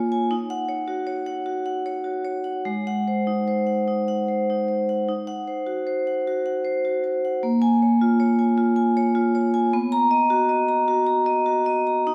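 Rubato and uneven at about 102 BPM in 4/4, this hypnotic, flowing contemporary classical excerpt for solo vibraphone in Eb minor, tuned to A4 = 441 Hz, has medium hard mallets drawing metallic, ringing, airy tones with the motor off, up front in a wet recital-hall reverb, as the harmony moves from Ebm7 through Ab7, Ebm6 and Bbm7 to Bmaj7 at 9.7 seconds.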